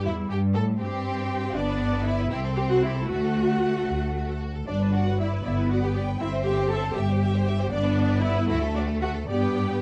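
An up-front, focused double bass section anchors this spirited, lively excerpt from a quick classical-period movement for string orchestra in G major, moving in a straight 6/8 at 78 BPM (dotted quarters). Above it, a bright, close symphonic violin section carries the melody, and a distant, expressive chamber violin section adds a soft-attacked second line from 0.1 seconds. A smooth, even cello section shares the bass, and an intense viola section fills in the accompaniment, all bowed with vibrato under light reverb in a dark, warm production as the harmony moves between G, C and D chords.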